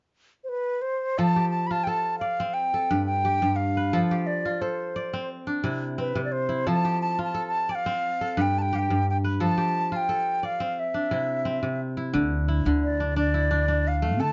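The recording has a close, intimate sound with a moderate studio reverb and a softened top end that keeps the short excerpt gentle and rounded. This is a warm, hypnotic piece of West African traditional music in F Lydian, moving at 88 BPM in a straight 4/4. An airy wooden flute opens almost at once, at 0.4 seconds, carrying the melody up front with tongued notes and vibrato. At 1.2 seconds a crisp, ringing kora joins with fingerpicked arpeggios, cycling through F, G and C chords beneath the flute. At 12.1 seconds a woody pizzicato upright bass with steel strings enters in its low register, adding depth over a D5 chord until the cut at 14.3 seconds.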